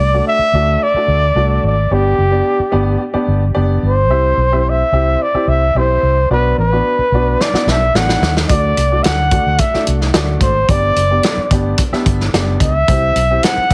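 A straight 4/4 groove at 109 BPM carries this uplifting 1960s-style soul piece in D mixolydian, where a breathy, whispered trumpet with vibrato, scooped notes and tape echo sings the melody up front over a round, punchy, foam-muted electric bass and a woody upright piano. A small-room drum kit with a tight kick and rolled-off top enters with a fill at 7.4 seconds, while the mix sits in moderate studio reverb and a heavily compressed radio sound.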